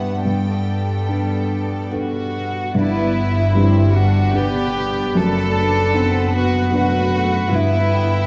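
A dark, warm scoring-stage sound frames this short, moving and hopeful cinematic orchestral excerpt in G major at 74 BPM in a rubato 3/4, where a floating violin melody sits in the background behind a rich, up-front second violin line with light vibrato, a mellow baby grand piano with audible action noise, pure sul tasto violas and a close cello bass, joined at 2.7 s by a dark, bowed double bass section as the harmony moves from Gadd9 through G6 and Bm7/F# to Em/G.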